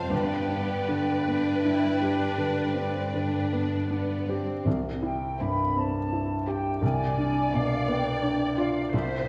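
In a reverberant recital hall, this short cut from a passionate, lush romantic movement for piano and orchestra flows with rubato in 12/8: a clear, up-front grand piano with audible action noise carries the melody, with a background violin section also carrying the melody, a second violin section adding a line with portamento, an airy, distant flute section above, expressive viola accompaniment, a focused cello bass, and very quiet hard-mallet timpani that stops at 7.8 seconds, while the harmony moves from G to C to Bdim7/C.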